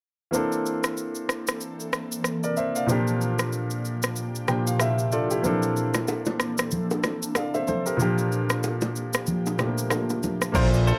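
An afrobeats groove in 4/4 with a swung sixteenth-note feel sets a smooth, hypnotic mood. An electronic, produced drum kit sits up front with a deep, tape-warm kick, crash cymbal, rim click and shaker, joined at 5.4 seconds by vintage, band-limited congas and bongos. A polished, present grand piano carries the accompaniment throughout, moving between Bbmaj9#11 and Gm7/Bb and playing a fill between 4.2 and 5.4 seconds. Underneath, an ethereal, airy pad holds sustained chords with a slow attack, ensemble chorus, built-in reverb and phaser. In the closing moments a fat, saturated sawtooth bass arrives up front at 10.5 seconds, along with a twangy, direct-recorded clean electric guitar riff with spring reverb and a soft, round, dark pluck with chorus tucked in the background. A moderate studio reverb gives the room a modest sense of space in this excerpt from a longer piece.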